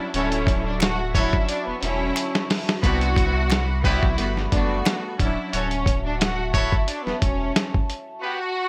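Soulful and warm, this brief boom-bap hip-hop cut at 89 BPM in D major sets a lush violin section melody over rich, smooth strings that drop out at 5.5 seconds, with bright jazz-style trumpet stabs touched by digital delay, a dark, moody analog pad with chorus and phaser sitting in the background, a thick, saturated sub bass, a gritty, tape-warm sampler drum kit with a thumpy kick placed up front and a fill from 1.5 to 2.8 seconds, and faint finger snaps in a small room, all moving through lush major-ninth chords.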